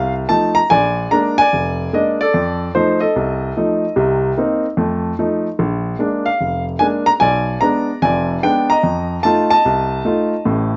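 A baby grand piano opens alone at 0.0 seconds, playing a swinging solo jazz passage that is cut from a longer piece. The tempo sits at 148 BPM in 4/4, with a 65% swing on the eighth notes giving it a swinging lilt in F mixolydian. The piano's tone is warm and natural, with a short sustain, and it sits up front in a light reverb. Its range stretches from F1 in the bass to Bb5 on top, moving through F7, Bb7, Cm7 and a Bdim7 before settling back on F7 at 8.8 seconds. The whole passage lasts just under 11 seconds, ending at 10.8 seconds with a warm, swinging mood throughout.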